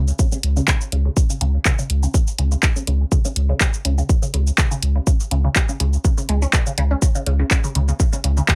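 Minimal techno at 123 BPM in 4/4 with a light 16th-note swing, cool and clinical in mood, cut from a longer piece with the room kept dry. A punchy, layered electronic kick and a tape-warm analog drum machine playing cabasa, handclaps and hi-hat sit up front over a deep, thick, saturated sub bass that pumps against the sidechain, the parts entering within the first 0.2 seconds. Above them, a juicy, squelchy resonant blip pluck spanning B2 to C#4 carries the riff, coloured by phaser, lush chorus, 12-bit sampler grit, dub echo and its own sidechain pumping.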